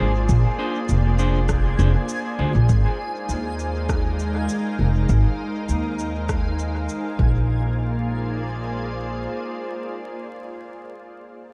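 Spacious and peaceful, this ambient dub excerpt floats on a soft, organ-like pad of detuned sine and triangle tones with ring modulation and ensemble chorus, while a reversed, granular swelling texture sits in the background. A woody pizzicato upright bass sits up front alongside a deep, overdriven electronic kick and a faint electronic cabasa and rim click carrying dub echo, and a clean electric guitar plays fingered stabs through spring reverb and dub echo until 2.5 seconds. The dreamy mix is soaked in cathedral reverb and vinyl crackle, and the kick stops at 7.3 seconds, just before the harmony returns to its opening Bb7 chord.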